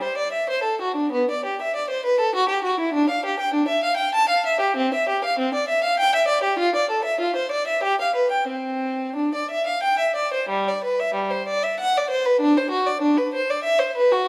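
Set in triple metre with a free, rubato pulse, this flowing and radiant classical passage, cut from a longer baroque-style suite movement, is played by a single unaccompanied violin for 14.3 seconds. The bowed solo line sits up front with a clear, smooth and even tone coloured by vibrato, ranging from G3 to A5. Moderate recital-hall reverb surrounds the playing.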